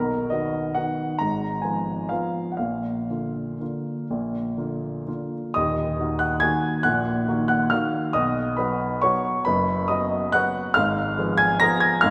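A woody upright piano sits up front in a reverberant church acoustic, its long sustain blooming into a lingering wash of room sound. This bittersweet, elegant classical waltz unfolds in three with a flexible rubato feel, the solo piano ranging from deep bass notes to the high treble. Taken from a longer piece, the passage moves into a new section at 5.6 seconds, settling onto a minor chord before closing on a diminished harmony at 10.8 seconds.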